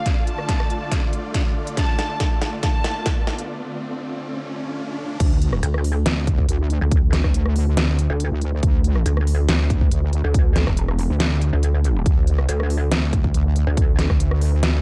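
Chaotic and aggressive, this heavy wobble dubstep cut from a longer piece moves in a half-time feel over a dark, warm digital ambience. It opens on a D minor build-up, with a smooth, vibrato-laden symphonic violin section carrying the melody through a dub echo while huge, bright supersaw chords sustain beneath and pump against the sidechain. A punchy, up-front electronic kick and a tape-tinged dubstep kit of deep snare, crisp filtered hats, rim clicks and crash cymbals drive a drum fill, and an electronic riser enters at 1.9 seconds and carries into a short break. At 5.2 seconds the drop arrives, and a resonant, saturated sawtooth wobble bass takes over on a single low note, joined shortly after by a pulsing, detuned pluck wobble bass, both thickened with chorus and overdrive. Through the drop the harmony falls away, leaving the two heavy basses and the pounding drums to dominate until the end.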